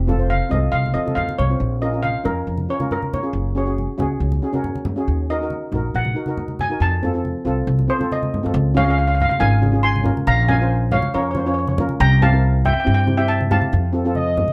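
The recording has a light reverb around a close, up-front lead steel pan and upright bass, giving this cut from a longer calypso piece an intense, tense mood. The lead pan, struck with hard rubber sticks, carries the melody in a bright, airy, shimmering voice and takes a solo through the opening 8.5 seconds. Beneath it, a second steel pan on double seconds plays a soft, mellow accompaniment with soft rubber sticks. A woody pizzicato upright bass on steel strings anchors the harmony, while low-tuned congas with thick skins, played with soft hands in a small room, add quiet percussion and a drum fill just before the second section begins. The chords move through Bb minor, Gbsus2 and Eb minor before turning to Dbmaj7, C7 and F7, and a mellow jazz-style horn section with light vibrato enters at 14.1 seconds on a single Eb5 as the passage cuts off.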